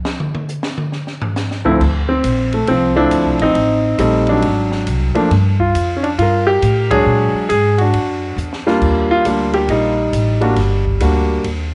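Smoky and swinging, this jazz piano trio fragment in D minor moves at 137 BPM in 4/4 with a swung eighth-note feel. An acoustic drum kit with dark cymbals, a high-tuned snare and a boomy kick opens the fragment, and at 1.6 seconds the warm, natural grand piano takes the melody up front as the woody pizzicato upright bass enters on steel strings. The band hits an accent at 6.8 seconds and the drums play a fill at 8.4 seconds, while the harmony moves through rich extended chords under a moderate plate reverb and a softly rounded top end.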